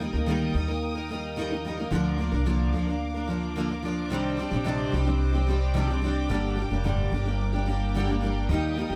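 In a straight 4/4 feel, this easy-going, carefree acoustic pop passage, cut from a longer piece, moves through Eb, Bb, Cmadd9 and Gm. A double-tracked, full-bodied picked steel-string guitar with audible finger squeak sits up front beside a woody, thumpy pizzicato upright bass on gut strings. Behind them, a lush bowed studio string section holds smooth, vibrato-rich sustained chords at a lower level, all in a light reverb.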